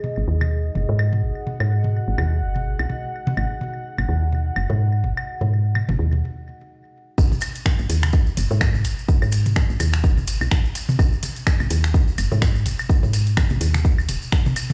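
A swung 126 BPM 4/4 pulse drives this hypnotic, clinical minimal techno piece, tuned slightly sharp at A4 = 441 Hz. Tape-toned electronic toms and woodblock echo through delay, a woody, round FM bass pumps up front, and a deep, detuned sawtooth pad with chorus and its own reverb drifts until a stop at 6.2 s. At 7.2 s the drop lands with a punchy, layered kick up front and grainy maracas set distant in a large room, and a house kit of finger snaps and metallic, low-pass-filtered hi-hats joins at 7.4 s, all heard dry, as if through a big sound system in a bare stone room.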